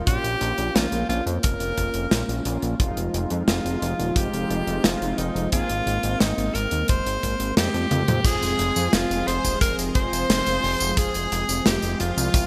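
At 88 BPM in a straight 4/4, this nocturnal, cinematic synthwave excerpt in F minor sets a tight, up-front kick and a small-room acoustic kit with gated-reverb snare, hi-hat, tambourine, toms and crash under a thick, detuned analog bass and a brassy pad, both pumping with sidechain, while round, dark synth brass stabs through chorus, tape and delay until 11.1 s, a bright jazz-style tenor saxophone with vibrato carries the lead through digital delay, a band accent and drum fill at 7.6 to 8.3 s lead into the second section, and a very quiet, shimmering string machine enters at 8.2 s, all within a bright 1980s-style digital production and plate reverb.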